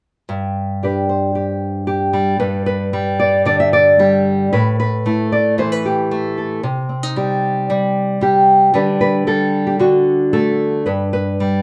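A small, up-front nylon-string guitar sits in a moderate studio reverb, its thumb-plucked acoustic tone warm. This short folk excerpt is a solo fingerstyle piece in G major at 113 BPM in a straight 4/4, warm and pastoral in mood, with the guitar playing alone from 0.3 to 11.6 seconds across a range from G2 to E5. From 2.4 seconds the harmony moves through G, Asus2 and C minor to Dsus4 and D before settling back on G.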